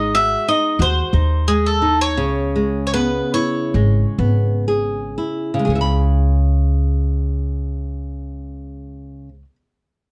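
The rhythm is a free, rubato 4/4 that slows through the opening 5.7 seconds, lending this fado-style ballad a passionate, longing air. A bowl-back mandolin carries the melody with picked double strings, sitting up front in a fairly high range before it falls silent at 4.6 seconds. A classical nylon-string guitar is fingerpicked beneath it with a bright tone, covering a broad register and continuing to the end of the passage. An upright bass, plucked pizzicato on steel strings, adds a woody, dark foundation close to the listener. The harmony moves from G#7 to C#m7, and a new section begins at 5.7 seconds, heard through close, detailed microphones with light reverb in this fragment cut from a longer piece.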